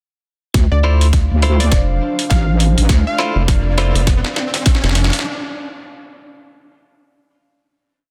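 Swung sixteenths carry this short, gritty, funky glitch hop build, with a tight, up-front electronic kick and a compressed, pitched-down sampler-style kit of snare and closed hats, while a heavy, saturated wobble bass and a rubbery, hollow square bass push beneath a catchy plucky lead with digital delay, sparse echoing stabs from a bright, clean electric guitar roughened by 12-bit sampler grit, a deep, moody analog pad that pumps, and an electronic riser from 1.9 seconds, inside a dry, dense, heavily limited modern master.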